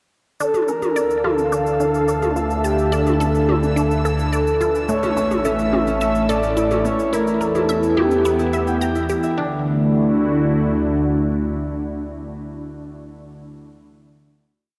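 Drenched in a cavernous cathedral reverb, this expansive, cosmic piece of sequencer-driven space music sets a breathy, flute-like synth lead with vibrato over a swirling phased analog pad and a warbling analog drone, while a squelchy resonant blip pluck cycles a 12-step loop drifting against the bar, a light overdriven machine pulse of electronic cabasa and toms ticks beneath, a bubbling stepped-filter texture holds a high note in the background, and a ringing concert harp joins with arpeggios at 5.0 seconds before the music settles on a final chord from 9.4 seconds.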